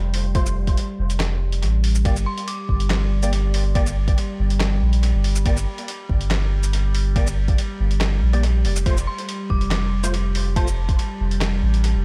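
A soft, round dub sub bass sits up front with tube saturation, anchoring this meditative, dark deep dubstep excerpt in G minor at 141 BPM with a half-time feel, while an electronic kick drum with studio reverb hits deep and layered beneath it. A gritty, pitched-down trip hop sampler-style kit of handclaps, hi-hat, ride cymbal, shaker and snare joins hollow organ stabs, both soaked in dub echo, over a resonant, ring-modulated drone with moving overtones sustaining on chords that move from F to Gm and back to F at 8.9 seconds. An eerie, inharmonic FM bell warbles in the background at 2.3 seconds and again from 9.1 seconds, in a dry but echo-heavy mix.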